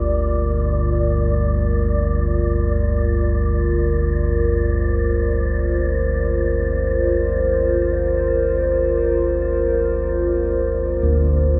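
A dreamy, reverb-soaked mix opens this dark, desolate ambient drone excerpt, which drifts in free time over a Bb chord, tuned slightly sharp to A4 = 441 Hz. Up front, a rumbling, ominous low drone with built-in reverb and subtle chorus sits beneath a moody analog pad of sustained chords treated with chorus and phaser. Bronze, beating gamelan-type bossed gongs fade in across the full 11.6 seconds with metallic arpeggios, while a faint, breathy wind-like tuned noise texture hovers high on D5.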